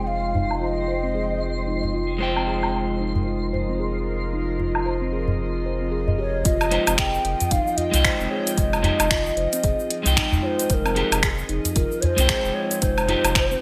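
A breathy, hollow ney carries the melody through this hypnotic, mystical organic downtempo excerpt, pausing after its opening phrase and returning at 6.2 seconds. It floats over a slightly broken-up picked electric guitar with sampler grit and pumping, a soft detuned pad, and a round, ringing steel tongue drum whose arpeggios pass through a filter sweep. A deep sine sub bass anchors the low end, a twinkling granular shimmer sparkles until 6.5 seconds, and a small, dry udu plays alongside an up-front, overdriven deep house kit of snaps, metallic hats, shaker and woodblock. An overdriven electronic kick joins at 6.5 seconds, all set in a lush hall with a bright 1980s-style digital sheen.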